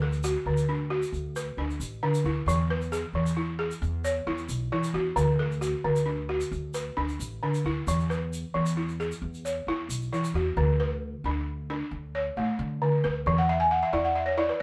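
Recorded live in one room with moderate studio reverb, this joyful, hypnotic excerpt of West African string and xylophone music moves at 89 BPM in 12/8 in D lydian, with a buzzing, dry balafon up front playing arpeggios over thumpy pizzicato upright bass and a grainy egg shaker that stops at 10.3 s, while the chords alternate between D and E and the balafon closes with a fill at 13.4 s.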